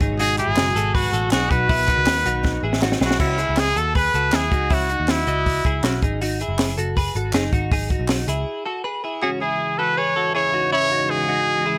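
Lightly reverberant, this breezy, youthful slice of jangly indie pop is cut from a longer piece, built on a twangy, compressed clean electric guitar playing arpeggios throughout with subtle chorus, over a round, foam-muted picked bass. A compact cocktail kit with a punchy kick, high-tuned snare and dark cymbals sits up front, plays a fill at 2.4 seconds and drops out with the bass for a break at 8.5 seconds, while hollow group handclaps hover in the background. A bright trumpet with vibrato carries the melody, and a mellow sawtooth string-machine cello patch, treated with phaser and ensemble chorus, pads sustained chords at the start and again from 9.2 seconds.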